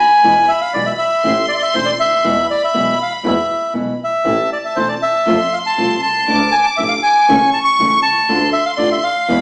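Dramatic and passionate, this tango excerpt in A harmonic minor moves at 119 BPM in 4/4 with a rubato feel, its chords running from E through Am, F, Dsus2 and A/C# to Dm. A reedy, up-front bandoneon carries the melody while a bright, intense bowed violin section adds a biting second line with light vibrato, and a single close double bass supplies an earthy, nasal bowed bass with an airy edge. A small-toned nylon-string guitar joins at 0.2 seconds with warm, thumb-plucked accompaniment and audible finger squeak, all heard as a band playing live in one room, with wet large-studio reverb and a small-speaker character.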